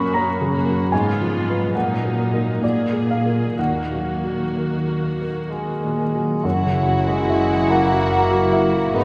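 Classical excerpt in a rubato 3/4 at 60-78 BPM, passionate and tragic, where an intimate baby grand piano with audible action noise carries the melody up front over an intense viola section and a smooth cello section bass; a pure, hollow flute second line and a mellow, distant bassoon join at 5.5 s, and at 6.4 s, as the harmony turns to Gb7, a lush violin section joins the melody in the background beside a focused violin second line, while a dark French horn section holds sustained chords and a close double bass section deepens the bass, the whole heard in a long, wet cathedral reverb.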